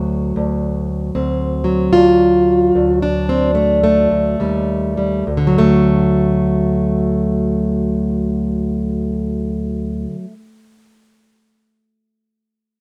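A boxy, up-front fingerpicked archtop acoustic guitar with fresh strings plays alone through this short, swaggering and laid-back acoustic country blues fragment in D mixolydian, swinging at 69-77 BPM in 4/4 and slowing down over the first 5.3 seconds as it moves from D7 through D to Eb before settling back on D, all set in a moderate studio reverb.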